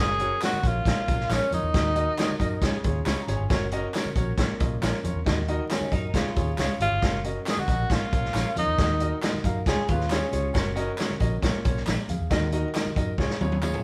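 A straight 4/4 groove drives this uptempo, uplifting 1960s-style soul clip, cut from a longer piece. A swinging big-band drum kit sits up front, its boomy kick, medium-tuned snare, hi-hat and toms sounding roomy and rolled-off on top. A dark, round, foam-muted fingered electric bass anchors the low end, while a concert grand piano fills out the harmony with deep bass, long sustain and audible action noise, adding a short fill at 2.8 seconds. A breathy tenor saxophone carries the melody in two short phrases, whispered and intimate, with vibrato, soft attacks and scooped notes, and an electric guitar through a small old amp adds twangy, slightly broken-up riffs from 5.7 seconds. Very quiet, bright congas and a background layer of group handclaps, tambourine and tube shaker sit beneath, the drums close on a fill at 13.2 seconds, and the band plays live in one room with light reverb and vinyl crackle for a warm, vintage feel.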